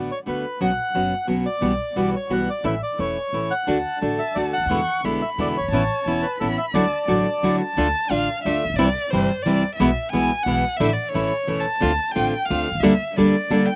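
An expressive bowed violin, soft in attack and rich with vibrato and portamento, enters at 3.7 s and takes a solo from 7.8 s in this elegant, nostalgic tango fragment in rubato 3/4, following a reedy, dark, close-miked bandoneon melody that plays until 7.6 s, over bright, fingerpicked classical nylon-string guitar with audible finger squeak and a woody pizzicato upright bass, recorded outdoors with little reverb.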